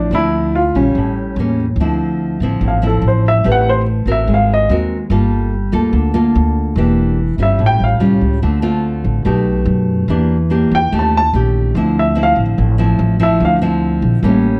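This bossa nova fragment in D minor opens with piano, nylon-string guitar and upright bass together at a straight 144 BPM in 4/4, setting a smooth, wistful mood. The fingerpicked nylon-string guitar carries the classical-toned accompaniment throughout, while the pizzicato upright bass sits up front with a woody, growly, thumpy sound. The baby grand piano takes the melody and soon moves into a solo from 1.8 seconds, playing in short phrases with brief gaps, its intimate, natural tone marked by short sustain and audible action noise. Underneath, the harmony moves through rich extended chords, from Dm9 and A7b9 through Gm9, Em7b5 and A7alt to Eb7#11 before settling back on Dm9 near 11.7 seconds. The production is dark and warm, with moderate studio reverb giving the instruments a modest sense of room.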